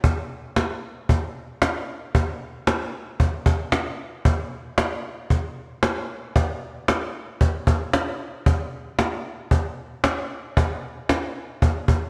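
A straight 4/4 pulse drives this short pop fragment, carried by a lone cajon that plays from 0 to 12 seconds. The cajon is snappy and acoustic, fitted with snares, and it sits up front in a live room. A lush hall reverb and the worn, warbling drift of old cassette tape give the piece a cool, nocturnal haze.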